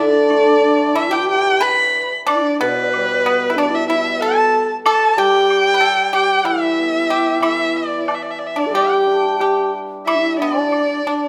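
A moderate recital-hall reverb gives this 11.3-second fragment of a longer Chinese traditional chamber piece a gentle sense of space, setting a pastoral, graceful mood in the G gong mode at 92 BPM in 4/4, played with a rubato feel and tuned to A4 = 439 Hz. Up front, a single bowed erhu carries the melody with a warm, expressive voice, colored by vibrato and portamento. A close-miked, end-blown bamboo xiao weaves a second line, breathy and hollow with a crisp attack and its own vibrato. The pipa adds another second line, bright, dry and percussive under fingerpicks. The hammered dulcimer supplies shimmering, ringing accompaniment until 10.7 seconds, while an acoustic woodblock enters at 0.3 seconds and sits in the background.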